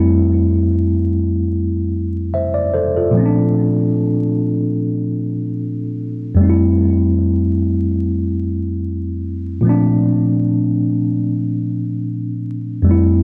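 Hip hop in free time, this dreamy, mellow excerpt features a lone tine electric piano playing from 0.0 to 13.2 seconds across a range from F2 to E5. The piano sounds worn and slightly out of tune, yet clean, direct and up front, its tone softened by a low-pass filter and trailed by tape echo. The harmony moves between Fmaj7 and Bbmaj7, arriving on Bbmaj7 at 3.1 seconds, returning to Fmaj7 at 6.4 seconds and moving to Bbmaj7 again at 9.6 seconds. Light reverb surrounds the instrument, and the production is dark and warm, with a layer of vinyl crackle beneath the keys. Cut from a longer piece, the passage floats by unhurried, built around the piano's mellow chords.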